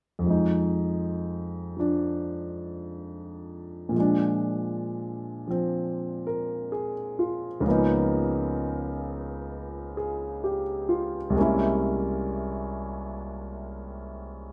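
Captured live in one room with light reverb, this cool, swinging solo jazz fragment, cut from a longer piece, features an intimate, up-front grand piano with long sustain and audible action noise, moving at 65 BPM in swung 4/4 from C2 to Bb4 through Fm7, Bb7, Db13 and C7b9b13 over its 14.5 seconds.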